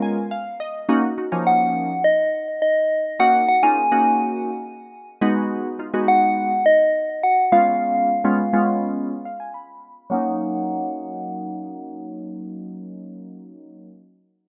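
Euphoric and upbeat, this short pop excerpt at 104 BPM in F# major sets a soft, round, warbling FM synth lead carrying the melody with chorus and delay over glassy, wave-folded digital keys that open with a fill, ride a filter sweep from 0.9 to 10.1 seconds and fill again at 9.0 seconds, all within light reverb and a rough, low-passed home-demo mix.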